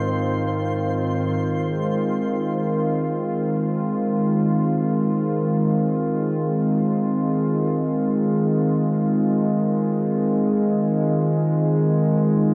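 A smooth, detuned analog pad holds sustained chords up front while a dark, evolving drone with pulse-width movement sits in the background and a bright, twinkling granular shimmer sparkles above them until 1.4 seconds. In this unmetered, luminous ambient fragment cut from a longer piece, the chorused pad carries a vintage, warbling character as the harmony settles from Cm/Ab onto Ab6. A lush hall reverb with a 3.0-second tail and a warm, dark production wrap the sound.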